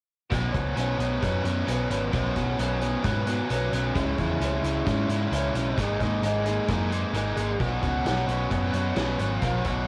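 Hazy and wistful, this short cut from a longer shoegaze and dream pop rock piece moves at a straight 132 BPM in 4/4, centered on B major. A biting, overdriven electric guitar sits up front, picked and double-tracked, playing a riff between B2 and G#4 with a subtle chorus and a cassette-tape tint. Beneath it, a vintage foam-muted picked electric bass gives a dark, round and punchy low end from G#1 to G#2. A loose indie drum kit of hi-hat, kick and snare sounds distant and roomy, with a tight kick, a medium-tuned snare and a rolled-off top, also carrying that cassette coloring. All three parts enter at 0.3 seconds, and the harmony moves from Bsus2 to C#m at 4.0 seconds, then through G#sus2 back to Bsus2 at 7.6 seconds, all within a home cassette recording dressed in light reverb.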